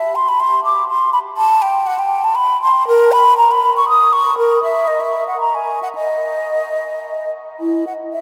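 This is a classical, baroque-style fantasia for unaccompanied concert flute, heard as a short fragment cut from a longer piece. The mood is grave yet flowing, moving in 3/4 at roughly 104 to 124 BPM with a free, rubato feel. The flute plays solo from 0.0 to 8.2 seconds, ranging from E4 up to D#6, its tone airy and hollow with vibrato and soft attacks. It sits up front in the mix, while a huge, wet ambient reverb with an 8.3-second decay places it in a vast, echoing space.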